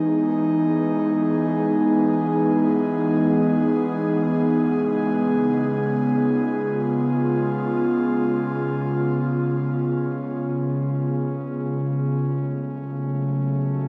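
A soft, breathy pad with a slow attack and long release plays alone in free time through this luminous ambient fragment cut from a longer piece, its chorus and tape echo bathed in a huge reverb that places it in a vast, echoing space as the harmony moves from Emaj7 to C#7 at 4.8 seconds and settles on F#m at 12.1 seconds.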